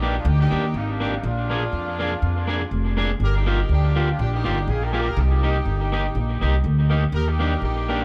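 A bouncy, cheerful ska excerpt with a gentle swing opens with all three parts together: a woody, thumpy upright bass plucked on gut strings sits up front, while a twangy, slightly broken-up electric guitar picks out the accompaniment through tape echo. Alongside them, a distant, roomy horn section carries the melody with light vibrato and its own tape echo. The chords move from Ebmaj7 through Bb7, Gm7 and Cm7 back to Ebmaj7 in a dry, close-sounding mix.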